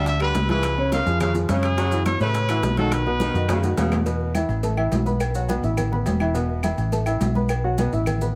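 A festive, joyful salsa groove at 210 BPM in straight 4/4 drives this short excerpt cut from a longer piece, built on congas with a thick-skinned, hard-handed sound sitting in the background, alongside quiet, low-tuned bongos and cowbell, ringing, saturated timbales and agogo bells, woody claves and grainy, mellow maracas. Up front, a dark, punchy hollow-body short-scale fingered electric bass anchors the low end with a round, amped tone, while a worn concert grand piano with deep bass and short sustain carries the accompaniment across the full 8.4 seconds. A clear, vintage-sounding trumpet takes the solo melody with scooped notes, backed by a tight, distant saxophone section playing a second line with vibrato, and both horns drop out before 4 seconds. A drum fill from 3.2 to 4.1 seconds leads into the second section, where the harmony moves from seventh chords such as C#7 and F#m7 to open Asus2, B5 and E5 shapes. 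Light reverb gives the whole a touch of space.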